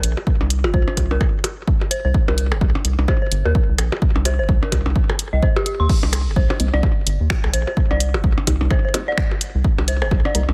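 A rubbery, hollow square-wave bass sits up front with sidechain pumping, driving this hypnotic, clinical minimal techno excerpt at 128 BPM in C minor with a swung 16th feel. A punchy electronic kick, an analog drum machine of crash, finger snaps and hi-hat, delayed percussion blips and an eerie, inharmonic FM bell riff with chorus and analog delay build the dry groove, while a woody marimba note flickers briefly at 0.6 seconds. From 6.6 seconds a muted, phased sawtooth dub chord stab murmurs in the background.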